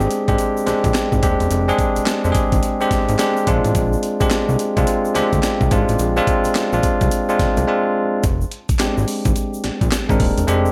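Set in a moderate plate reverb, this confident, punchy new jack swing excerpt has a barky, bell-like tine electric piano comping up front over a fat, saturated analog bass with a detuned sawtooth-and-square tone and a plucky filter. A gritty, compressed breakbeat-style drum kit with a thumpy kick, medium-tuned snare, hi-hat and handclaps carries a swung feel, while a grainy tube shaker sits in the background. The minor ninth-flavoured harmony moves to a Bb9 at 3.5 seconds, then a brief silent break at 7.7 seconds gives way to a new section at 8.2 seconds.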